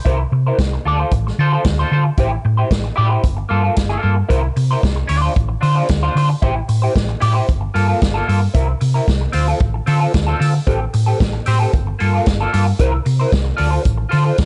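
Danceable and sultry, this short disco excerpt sits on a straight feel in 4/4, with a single section throughout. A slightly broken-up electric guitar, picked and run through a wah, carries the accompaniment from the very start, voicing a repeating cycle of C7, Dm7, Am7 and Gm9. Joining at 0.1 s, a hollow-body short-scale electric bass, played with the fingers and amped, gives a round, dark low end up front. A vintage acoustic drum kit, heard in a natural studio room, supplies hi-hat, a punchy kick and a medium-tuned snare with a rolled-off top. The overall production is dusky and mellow, with the bass sitting slightly forward of the guitar and drums until the parts close out around 14.5 s.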